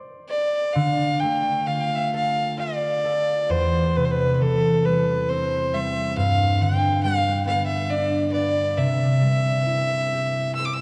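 A ringing, fingerpicked concert harp opens this mournful Celtic slow air in D dorian at 68 BPM in a rubato 3/4, joined at 0.3 seconds by a single earthy, boxy bowed fiddle carrying a longing melody up front over chords moving from Dm through C/E and G to C, all bathed in a wet church reverb with a dark, warm production.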